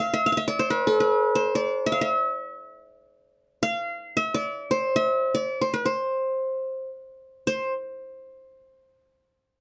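Festive and stately, this short fragment of Arabic maqam ensemble music features a solo qanun, heard from the start until 7.7 seconds. Its bright, plectrum-plucked triple strings sit up front with a touch of light reverb around them. A new section begins at 7.5 seconds, just before the qanun stops.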